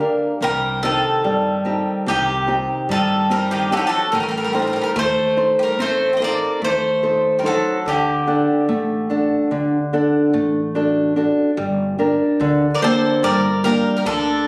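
Captured on a phone in a moderately reverberant studio and compressed, this wistful, reflective piece of Greek folk in 9/8 sets a bright, metallic bouzouki melody with plate reverb up front beside a small, fingerpicked nylon-string guitar accompaniment, also up front, while a second bouzouki adds a warm, picked line on double strings and a woody pizzicato upright bass sits low beneath, the harmony moving from Cm through Adim and D before settling on Gm at 11.6 seconds.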